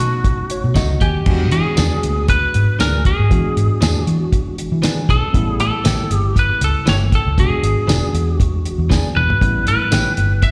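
Heard as a live gig through the venue's PA, with recital hall reverb and a small room's ambience, this excerpt of laid-back, swaggering soul blues rolls along at 118 BPM in E mixolydian, its straight-eighth feel carrying a light swing on the sixteenths. A slightly broken-up, picked lead guitar with slapback echo sits up front, opening with a short solo while a tine electric piano through a combo amp adds a fill before both settle over the changes from B7 to E7 and A7. Beneath them, a foam-muted, round and punchy fingered bass and a dry, cloth-damped drum kit with a fat snare, tight kick, dark cymbals and tambourine hold the groove, as a bright, direct-recorded clean guitar drenched in lush chorus drops in stabs from 0.7 seconds and the drums play a fill at 9.2 seconds.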